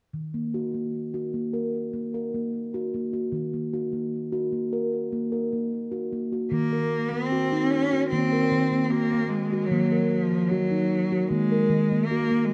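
A meditative world piece with a hypnotic pull, cut from a longer work, built on a steel tongue drum struck with soft rubber mallets, whose round, pure, ringing arpeggios sit up front from the start under a diffuse ambient delay. At 6.5 seconds a single bowed cello enters with a clear, focused melody sung with vibrato, also up front and carried by its own diffuse delay. Wet concert-hall reverb and small-room reverb surround both instruments in a dark production.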